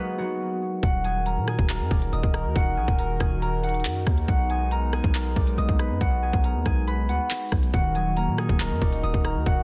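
A ringing, fingerpicked concert harp carries the melody through a low-pass filter and tape echo, joined briefly by a clean electric guitar with a phaser, in this ominous, dark drill fragment in Eb minor at 139 BPM with a half-time feel. At 0.8 seconds a hollow, flute-like pad with chorus, a punchy, heavy 808-style bass and an up-front electronic drill kit with a hard-clipped kick, crisp hats, handclaps and rim clicks arrive, and the guitar returns at 7.7 seconds. The chords move between B6 and Ebm, and the dense, heavily limited master sits in a digital ambience.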